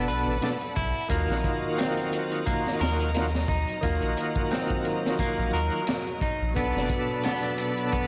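A blown-out, overdriven recording wrapped in vinyl crackle and light studio reverb frames this brooding, melancholic trip hop excerpt, cut from a longer piece and moving at 88 BPM with a swung sixteenth-note feel. A crunchy breakbeat kit sits up front with a tight kick, a high-tuned snare and hi-hat, its gritty, saturated tone dark and rolled-off at the top. Beneath it, a soft dub sub bass with a round, deep, fast-attack sustain and tube saturation carries the low end until 6.9 seconds. A bright tonewheel organ, also up front, shouts through overdrive, chorus vibrato, slow rotary speaker, tremolo and tape echo, with audible key click, while a twangy, clean electric guitar picks arpeggios roughened by 12-bit sampler grit and delay. A clear symphonic string section holds bowed, lightly vibrato chords in the background as the harmony moves from Bm7 to D#madd9 and back to Bm7 at 6.6 seconds, where maracas and triangle quietly join from a small room.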